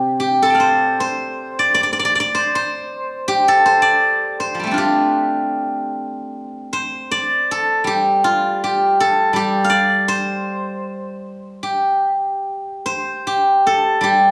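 A solo steel-string zither, played with fingerpicks, sits up front with a bright, silvery, ringing tone from C3 to C6 in this serene, elegant Chinese traditional plucked-string passage in the G shang mode, moving in a rubato 2/4 at roughly 74-83 BPM through a light small-room reverb, with a new section beginning at 6.3 seconds before the short cut from a longer piece ends at 14.3 seconds.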